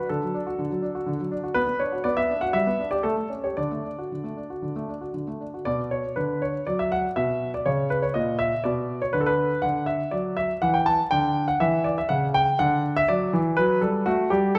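A classical-period piano sonatina excerpt, elegant and graceful, unfolds in a rubato 4/4 on a solo grand piano whose polished, intimate tone sits up front with long sustain and audible action noise. After opening in the major, the music turns toward the relative minor at 5.7 s, passing through diminished harmonies along the way. A moderate recital hall reverb gives the clear piano a natural sense of space, and the passage is cut from a longer piece.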